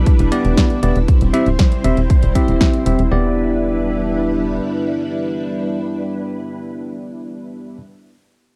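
A straight 4/4 pulse opens this nostalgic, melodramatic italo disco fragment, with a punchy electronic kick and a layered house kit of hi-hat and snare driving it alongside a tight, sawtooth sequencer bass. Lush string-machine chords with ensemble chorus and bell-like tine electric piano stabs, run through tape echo and a filter sweep, move from Em7 to C and back to Em7 at 3.1 seconds. The drums are gone by 3.1 seconds and the bass by 4.6 seconds, leaving strings and piano in a dry, close studio sound.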